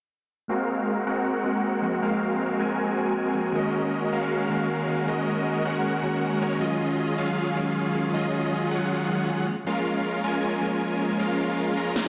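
From 0.5 s, huge, detuned supersaw chords sit up front beside a bell-like tine electric piano, both filtered and delayed, with filter sweeps on each as the harmony moves through Gbmaj9#11, Ab9sus4, Ebm11 and Bbm7. This dreamy, bittersweet future bass fragment runs at 157 BPM in a half-time 4/4 feel with light swing on the 16ths, washed in a lush digital hall reverb. A punchy, tape-warm electronic snare, layered and re-recorded in a large room, lands up front at 12.0 s.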